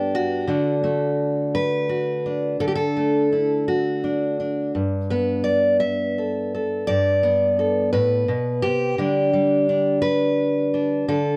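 Folk fingerstyle guitar fills this brief clip, a gentle, warm passage in G major that moves in a loose, rubato 6/8 at around 57 beats per minute. A single fingerpicked steel-string acoustic guitar plays throughout, ranging from G2 up to E5, with the full-bodied tone of a dreadnought and the bright sheen of fresh strings. The harmony drifts from D to Gadd9 at 4.8 seconds and settles on an unresolved Dsus4 at 9.0 seconds, lending the clip a suspended, open-ended feel. Close, detailed microphones keep the guitar up front with little reverb, so the intimacy of the playing comes through clearly. The instrument is tuned slightly below standard pitch, to A4 = 436 Hz.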